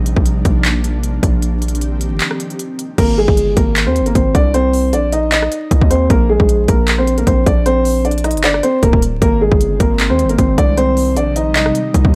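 Melancholic and eerie, this trap-leaning hip hop clip moves with a half-time feel over a looping progression of Bb, Eb6, Ab and Cm. It opens on a break where an ethereal, airy pad holds sustained chords, its detuned unison tone softened by ensemble chorus and reverb, while a hard-hitting 808-style bass and a trap drum kit sit up front. The 808 is punchy and heavy, a sine tone with a noise layer and a fast attack that decays, and the electronic kit brings a hard-clipped kick, crisp hi-hats, handclaps, rim clicks and crash cymbal. At 3.0 seconds a dark, mellow grand piano with a boxy character takes the melody, and the pad returns at 9.6 seconds to hold chords beneath it. A layer of vinyl crackle and a dry sound frame the piece.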